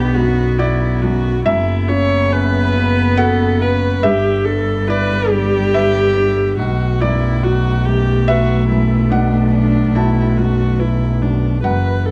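Fragile and melancholic, this brief passage cut from a longer neoclassical piece for piano and strings drifts in B minor at 71 BPM in 3/4, its rubato feel letting the pulse breathe. A felt-muted upright piano carries the accompaniment across its span, soft and mellow with a thin, intimate felt tone, while a single viola adds a gentle inner voice, bowed sul tasto with light vibrato, an airy bow and a soft attack that sits up front. A lone cello supplies a dark second line in a narrow lower range, its close, smooth-topped sound also shaded by light vibrato and sul tasto bowing. Beneath them, one double bass holds the floor with a rich, pure tone that seems to float, bowed softly and placed prominently in the blend. The harmony moves from Bm through F#7sus4 at 1.5 seconds and Em7/G to Bm7 at 6.6 seconds, all four parts sounding together throughout the 12.1 seconds. The small room lends only a faint ambience with little reverb, keeping the ensemble close and unadorned.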